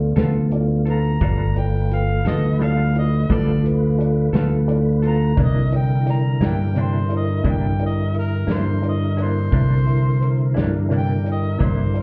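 Heard muffled as if through a wall with a touch of club reverb, this laid-back, rollicking slow blues excerpt in 12/8 at 58 BPM moves from G9 to C9 at 5.4 seconds, with a round, punchy fingered electric bass up front, a dark, woody upright piano, a lightly overdriven tonewheel organ with key click, chorus vibrato and slow rotary speaker in the background, a clean, compressed semi-hollow guitar with tremolo, and a natural country drum kit with a punchy kick, while a bright, close-miked harmonica with light vibrato, scooped notes, overdrive and digital delay carries the jazz-style solo melody from 0.9 seconds.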